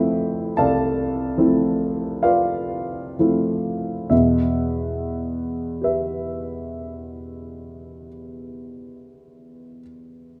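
Set up front in a moderate recital-hall reverb, a concert grand with deep bass and a natural tone plays this nocturnal, mysterious fragment of impressionist classical solo piano, moving in a very slow, rubato 4/4 at 30-41 BPM that slows further over its first 4.1 seconds on an Fmaj7 before shifting to Em at 4.1 seconds for the rest of the 10.4-second cut.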